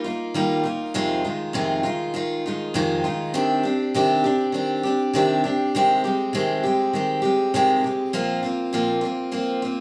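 A straight 4/4 rock pulse at 100 BPM carries this reflective, wistful excerpt, where a bright, fresh-stringed picked steel-string acoustic guitar plays alone and up front from 0.0 to 9.8 seconds through Ebadd9, Fm7, Cmadd9, Abmaj7/C and Bbsus2, set in a moderate large-studio reverb that gives the live-room take an auditorium glow.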